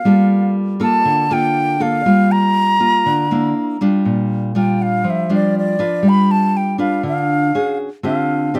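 A straight 4/4 bossa nova groove carries this melancholic, intimate excerpt, where an airy concert flute with vibrato and a crisp attack plays the melody up front over a small, warm, fingerpicked nylon-string guitar with fresh strings, the harmony moving from Gm9 through Bb6 and G7 to Dm7 as the flute takes a solo from 4.0 seconds, captured close and detailed with little reverb.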